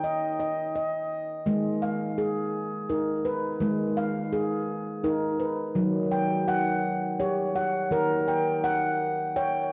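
In a slow, straight 6/8 at 56 BPM counted in dotted quarters, this gentle, meditative world fragment, cut from a longer piece and tuned to A4 = 444 Hz, features a solo handpan played with the fingertips, its ringing, airy stainless-steel tones sitting up front across a range from Eb3 to G5 under a diffuse ambient delay, moving from Eb to Abm/Eb at 1.5 seconds and Gb/Eb at 5.8 seconds, all bathed in a wet echo-chamber reverb with a 2.4-second decay and colored by worn cassette tape whose warbly pitch drift adds a hazy, aged feel.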